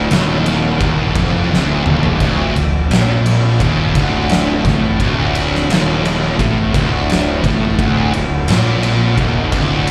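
A straight 4/4 pulse at 86 BPM drives this sludgy, heavy stoner and doom metal clip in D minor, with an oversized, low-tuned acoustic drum kit up front from 0.1 seconds: punchy kick, fat snare, dark cymbals, ride and toms, all gritty and saturated, rolling through a fill from 1.5 to 2.2 seconds. Behind it, two thick fuzz guitars grind out the riff, one with a slapback echo and the other warm, alongside a very quiet, bright, double-tracked fuzz guitar and a growly overdriven fingered bass. A very quiet tonewheel organ holds piping, lightly overdriven chords through a slow rotary speaker with audible key click, all heard as a live gig through the venue's PA in a small club room.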